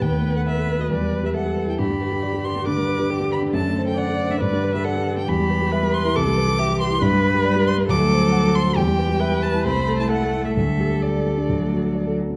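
Lively and cheerful, this quick classical-period movement for piano quartet moves at 137 BPM in 4/4 with a rubato feel, cut from a longer piece and tuned to A4 = 439 Hz. A focused violin carries the melody between D5 and D6, its bowed tone shaded with vibrato and a smooth top. Beneath it, a rich, expressive viola fills in the accompaniment with soft attacks and portamento, while the cello sits distant and even in the background with a second line. The dark concert grand piano stands up front, louder than the strings, with a mellow, vintage character, deep bass and long sustain. The harmony opens on B7/D# and circles through Em, G, Cmaj7 and D7 before settling from Dsus4 to D at 11.5 seconds, all heard through close, detailed microphones in a moderate recital hall reverb.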